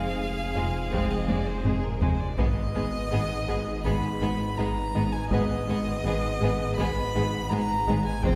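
A straight 4/4 pulse at 82 BPM in G# minor drives this futuristic, vast stretch of hybrid orchestral and electronic film score, cut from a longer piece, with a taiko ensemble on heavy sticks entering at 0.9 s and playing a drum fill from 1.3 to 2.4 s as the harmony moves from Fm to G#m. A clear solo violin with delay carries the melody alongside a warm, lush bowed violin section also on the melody, while a second violin section plays a focused second line and quiet violas, dark cellos and double basses fill the accompaniment and bass. Beneath them, a distant, roomy trombone section holds dark sustained chords, a swirling, thick, saturated detuned saw bass with phaser anchors the low end, and a round, tine-like thumb-piano-like synth pluck with chorus warbles through soft arpeggios, all set in a reverberant scoring-stage space heard from further back.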